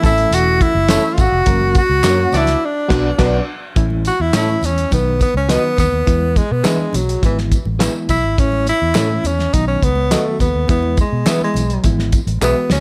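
The recording has a light reverb, in this excerpt from an upbeat, joyful 1960s-style soul piece in a straight four. A breathy, close-miked tenor saxophone sits up front with subtone and vibrato, carrying the melody and moving into a jazz-style solo at 3.8 seconds. Behind it, a reedy, worn electric piano, slightly out of tune and lightly overdriven with fast tremolo, plays the accompaniment, while a picked, slightly broken-up electric guitar adds compressed stabs in the background. A very quiet, ringing vibraphone plays a second line until 2.6 seconds, and a dark horn section with soft attack and octave doubling adds a brief second line at 2.3 seconds, during the band accent. Underneath, a round, foam-muted fingered bass and a cloth-damped, thuddy drum kit with a fat snare, tight kick and dark cymbals drive the groove and end on a drum fill, with close, dry congas and background tambourine, maracas and group handclaps filling out the percussion.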